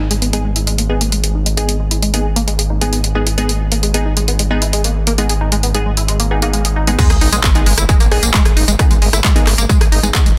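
A straight 4/4 pulse at 133 BPM drives this relentless peak-time techno cut in G# minor, held on a single G#m chord and taken from a longer piece. An overdriven, layered techno drum kit sits up front with hi-hat, handclaps, rim click, tambourine and crash cymbal, its hats, cymbals and percussion pumping against the sidechain. A growling, thick FM bass, also up front, holds the low end and pumps with the sidechain, while a tight, detuned sawtooth-and-square sequenced synth riff carries chorus, phaser, tube saturation, gritty 12-bit sampler texture and delay, with a filter sweep running across it through the opening stretch. Crisp, wave-folded wavetable chord stabs enter at 0.3 seconds, mellow and decaying, with delay and the same pumping motion. At 7.0 seconds the track drops: a heavy, overdriven electronic kick arrives, and a very quiet sub drop lands as an impact beneath it. The dense, heavily limited master keeps a light reverb around the parts.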